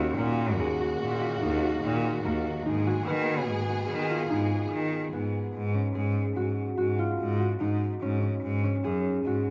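Set in light reverb, this restless, hypnotic fragment of contemporary chamber music moves at 146 BPM in 7/4, with a mellow, ringing concert harp playing thumb-plucked arpeggios up front beside a clear, smooth, even solo cello bowing the bass line with vibrato, while a dark, lush studio string section sustains expressive chords until 5.5 s as the harmony travels from D#m to D#m11.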